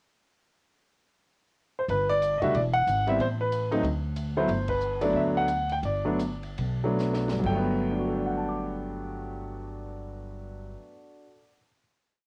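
Swinging in 4/4 at 130-185 BPM, this brief, relaxed jazz piano trio piece in G major opens with a short piano pickup before the upright bass and drums join at 1.9 s. The concert grand sits up front with a clear tone and deep bass, stating a motif-based melody in period phrases while its syncopated comping uses rootless voicings. The pizzicato upright bass is woody and also up front, its steel strings carrying a two-feel line. Sitting lower in the mix, the compact cocktail kit sounds dry, with dark cymbals, a high-tuned snare and a punchy kick under a stick-played ride pattern. The tempo starts to slow at 4.5 s, the band hits an accent at 4.7 s, and a drum fill leads into a sustained final chord at 7.4 s. Piano and drums carry a cassette tape coloring, and light reverb gives the whole trio a homespun feel.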